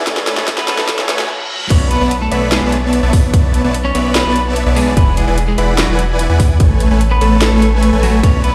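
Lush and emotional, this future bass piece moves at 147 BPM in 4/4 with a half-time feel, in B dorian. It opens with a build-up carrying a drum fill, a filter sweep, a background riser and reverse cymbal, a very quiet, breathy pad holding chords, and a warm grand piano with dub echo sitting in the background, before a brief stop at 1.3 seconds. The drop lands at 1.7 seconds, where a deep, saturated sub bass enters up front, and the chords move from Bm11 to E7 and back to Amaj7. Throughout, a huge, detuned supersaw riff with vibrato pumps with the sidechain, and from 0.6 seconds an electric guitar at the edge of break-up carries the melody with tape echo. A hard-clipped electronic kick drives the beat, joined by a trap kit with a sharp snare, metallic hats and crashes. The mix has light reverb and digital ambience, with the sound of a big system playing in a bare stone room, cut from a longer piece.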